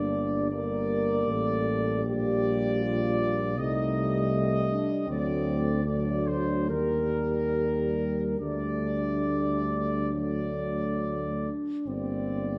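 The full brass band enters together at the opening of this short classical excerpt, an elegiac, solemn, hymn-like passage in four with a free, rubato feel. A bright trumpet section carries the melody in a high register, while a French horn section, close-miked with light vibrato, sings a second line just beneath it. In the background, a euphonium and a trombone with vibrato and a soft attack fill in the inner harmony with mellow tone. Up front, a tuba with light vibrato and a smooth top anchors the bass, giving the low end a round, steady weight. The harmony moves through Gm, Am7b5/C, D7, Eb and a Dsus4 that resolves to D before settling back on Gm at 11.9 seconds, all bathed in a moderate scoring-stage reverb that lends the ensemble a spacious, ceremonial glow.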